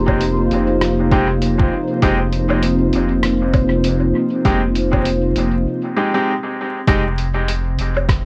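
Vinyl crackle and the tape colour of a home cassette recording frame this spacious, meditative ambient dub fragment, where a deep, layered electronic kick and a muffled, pitched-down sampler kit of hi-hat, rim click and woodblock (the kit trailing dub echo) ride a swung sixteenth feel over a round sine sub bass and an airy, detuned pad holding an Fm7 chord. In the background, a vibraphone with soft mallets rings out arpeggios through analog delay, while a resonant, bubbling sawtooth texture with random filter steps, chorus and its own reverb drifts until 5.7 seconds, and a brilliant, woody upright piano enters at 1.1 seconds with up-front stabs soaked in dub echo. After a brief break, the music settles onto an F5 chord from 6.9 seconds.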